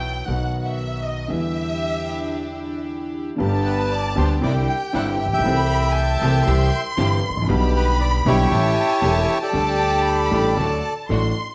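This elegant, passionate tango excerpt moves at 116 BPM in 4/4 with a rubato feel, starting in E minor before turning to G major at 3.4 s. A lush, bowed violin section with expressive vibrato sings a high second line. Beneath it, a concert grand piano with a deep, vintage bass gives accompaniment, and a pizzicato upright bass with a woody, growly tone anchors the low end. A floating studio string section adds soft-attack stabs from the background. At 3.7 s a reedy, dark bandoneon takes the melody, close-miked and up front, colored by slapback echo and plate reverb. The whole ensemble sits in a moderate large studio reverb, and the harmony winds through Cadd9, Am7/C and A7 to close on Dsus4 and D.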